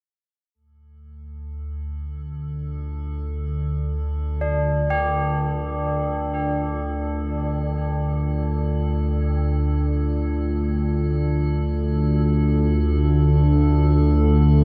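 Dark and desolate, this dark ambient drone fades in from 0.5 seconds on a low, evolving analog drone that sits up front with pulse-width-modulated sawtooth and pulse tones, beneath a deep, moody analog pad of detuned square and sawtooth waves with a sub octave and a moving notch, both softened by chorus. An eerie, inharmonic FM drone with ring modulation hovers faintly high above, and solemn tubular bells, struck with a rawhide hammer and heard close and full, enter at 4.4 seconds with arpeggios trailed by a diffuse delay. A cavernous cathedral reverb and a dark, warm production wrap this cut from a longer piece, which rests on a single D minor chord.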